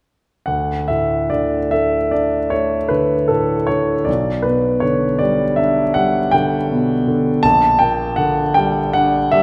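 A concert grand piano, close and intimate, carries this short romantic nocturne alone, its tone polished and up front with a deep bass and long sustain. The sound of the instrument's action is audible beneath the notes, adding a sense of physical presence. The music moves in 9/8 with a free, rubato feel, and the mood is nostalgic and dreamy. The piano sounds from 0.5 to 9.4 seconds, spanning from Bb1 up to A5, as the harmony drifts from D5 to G/B at 4.1 seconds and then darkens to Gm/Bb at 7.4 seconds. A wet scoring-stage reverb with a 1.8-second decay surrounds the performance, and the passage ends as a fragment cut from a longer piece.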